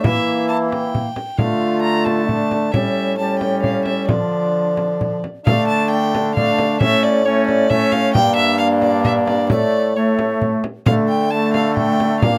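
Close, detailed microphones and a light reverb frame this rustic, courtly consort dance in three, cut from a longer piece, with a second section arriving at 5.5 s. Up front, a single bowed violin with a gut-string, reedy, period tone carries the melody over an airy bass recorder second line with a chiff at each crisp attack. A brilliant, distant trombone fills in the accompaniment, a warm bassoon with light vibrato holds down the bass, and a small, bright frame drum played with hard hands keeps the dance going throughout.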